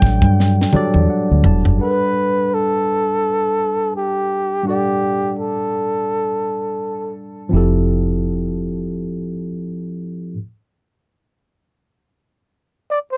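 A slow 84 BPM groove in 4/4 with a lazy 16th-note swing sets this sensual, relaxed neo-soul and R&B excerpt in G major. A tight funk drum kit, with its high-tuned snare, tight kick and small-room sound, opens alongside a deep, foam-muted fingered electric bass, and both drop out at 1.8 seconds after a drum fill and an electric piano fill. Over a Gmaj9 chord, a breathy flugelhorn carries the melody up front with a whispered, intimate tone, soft attacks, scooped notes and gentle vibrato, while a worn, slightly out-of-tune tine electric piano comps beneath it. The round, dark bass returns at 7.5 seconds as the harmony shifts to Fmaj9, and the band stops at 10.4 seconds, leaving a last brief flugelhorn phrase just before the end. The dry, close 1970s-style studio sound keeps every part present and near.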